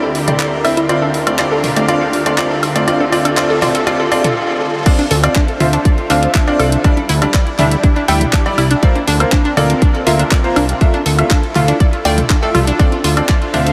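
Driving and emotional, this progressive house excerpt opens with a build-up of lush, detuned unison pad chords, chorused analog pluck arpeggios under a filter sweep, bright concert grand piano stabs, a very quiet riser, a glassy drifting texture and house drums with electronic toms and congas, the pad, pluck, piano and percussion pumping and everything soaked in huge dreamy reverb, before a brief stop at 4.4 seconds gives way at 4.9 seconds to a drop where a punchy, up-front kick and a fat, saturated sawtooth bass take hold over Dm7, Cadd9, C7sus4/D and Fmaj7/D.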